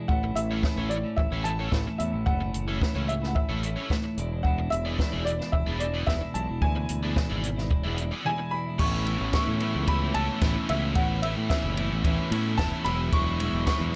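A compact cocktail drum kit sits up front with a punchy kick, high-tuned snare and dark cymbals, driving this carefree, upbeat indie rock cut at 110 BPM in A major, alongside a growling overdriven fingered bass. A twangy, compressed twelve-string electric guitar opens the riff at 0.0 seconds, joined by a biting overdriven guitar with ensemble chorus and slapback echo, while a woody, brilliant upright piano carries the melody with its own slapback echo. The dry, dark production moves from A and E7 to Aadd9 at 8.8 seconds and Eadd9 at 12.9 seconds, and the excerpt is cut from a longer piece.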